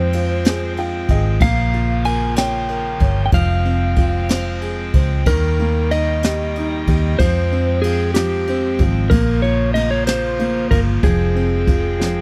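In a steady six-eight sway, this melancholic, aching pop ballad fragment sets a slightly broken-up electric slide guitar singing the melody over open baby grand piano, hollow clarinet-stop pipe organ chords with chiff and tremulant, a dark, foam-muted fingered electric bass sitting up front, and a brushed jazz kit with punchy kick, high-tuned snare and dark ride, all in a dry, close 1970s-style studio sound, with a piano fill at 0.5 seconds and a drum fill at 12.0 seconds.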